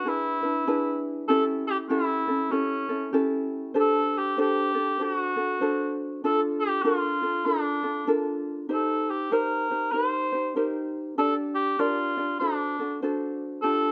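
Dreamy and relaxed, this short Hawaiian excerpt drifts along at 97 BPM in 4/4, with a gentle swing on the eighth notes and a tuning set slightly low at A4 = 436 Hz. A mellow cor anglais carries the melody from start to finish, sitting up front with a punchy yet distant, roomy character and a classical-style solo voice. Beneath it, an acoustic ukulele provides thumb-plucked accompaniment throughout the 13.9 seconds, its tone light and warm. The harmony wanders from E7 and A7 through D7sus4 and D7 into Bbmaj7 and Cm7, settling on Gm/D before returning to D7. Close, detailed microphones and a light reverb give the pair an intimate, softly glowing sound.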